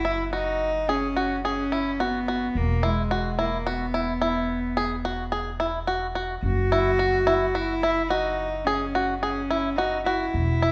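A bright, twangy bluegrass banjo picks fingerpicked arpeggios up front in this playful, hopeful contemporary chamber piece in 7/4 at 108 BPM, alongside a close, reedy bowed cello carrying the melody with a rich gut-string tone and a woody, thumpy pizzicato upright bass, moving from F#9sus4 through Esus2 to F#5 in a moderate concert hall reverb.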